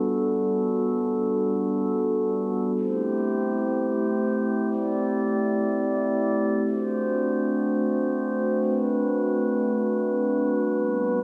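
Hip hop in free time, this floating, dreamy excerpt from a longer piece features a single glass harmonica playing solo from 0.0 to 11.2 s, ranging from G3 to D5. Its tone is glassy and pure, with a slow attack and a smooth, ethereal quality, and it sits up front in the mix with a digital delay trailing its notes. A huge ambient reverb, with a decay of about 7.8 s, surrounds the instrument in a vast, hazy space. The harmony moves from Gmaj7 to Am7 at 2.8 s, shifts to D7 at 6.7 s, and settles back on Gmaj7 at 10.6 s. The tuning sits slightly below standard pitch, with A4 at 437 Hz.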